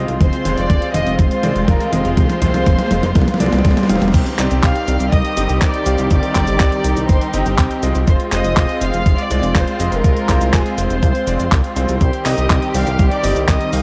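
This melodramatic, danceable italo disco cut opens with a drum fill and a faint electronic riser over veiled, muted strings holding sustained chords, which carry a vintage 12-bit sampler grit and a low-pass filter. Beneath them, a glossy chorused synth bass sits up front with tube saturation, while a bright, clangy electric grand piano adds stabs in the background. A thumpy, tape-warm electronic kick and a clean 12-bit drum machine with cabasa, crash, handclaps, hi-hat and toms drive the straight four-four beat, both sounding as if re-recorded in a small room. From 0.2 seconds, a dark, intimate violin section with a soft attack, light vibrato and tape echo carries the melody. The riser drops away at 4.1 seconds as the harmony moves between F minor and C minor add nine. The dry, gritty hardware sound has light digital reverb and a layer of vinyl crackle, and the passage is cut from a longer piece.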